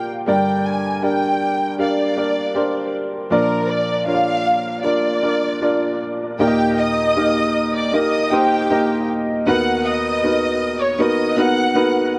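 Bathed in moderate spring reverb and an echo-heavy mix, this tender, emotional pop excerpt at 79 BPM in Eb major pairs a lush, bowed violin section with vibrato, carrying the melody, and a clear, woody upright piano accompaniment, both up front and trailed by dub echo, while the harmony moves from Gm and Bb to Eb and Bmaj7/D# from 6.4 s.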